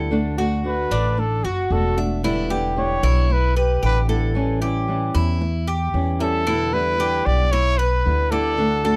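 Danceable and warm, this latin excerpt at 113 BPM in straight 4/4 sets a breathy, whispered trumpet with vibrato, entering at 0.7 seconds and playing an intimate solo up front until 6.5 seconds, over a thumpy, woody pizzicato upright bass, metallic arpeggios from a picked Cuban tres with doubled strings, and fingerpicked flamenco guitar accompaniment, all moving through D, Em7 and A7 chords in a close, detailed, dry sound.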